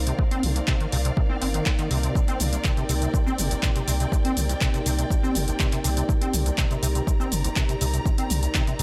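Acid house with a trippy, hypnotic mood, this excerpt rests on a single Cm7 chord for its 8.8 seconds. A squelchy, resonant square-wave acid bass carries the riff in hollow, saturated filter plucks that attack fast and decay, colored by overdrive, ensemble chorus and tape echo. Beneath it a deep, round sine sub bass sustains the low end, while an up-front, tape-warm electronic kick punches in at 0.2 seconds alongside an analog drum machine playing cabasa, handclaps and hi-hat. In the background, a dark, moody pad of detuned sawtooth and triangle tones with a sub octave swells in slowly on sustained chords through chorus and phaser, and a distant, lush symphonic string section adds bowed ensemble texture with focused vibrato. The pad, strings and both basses pump with the sidechain, and a light reverb surrounds the mix.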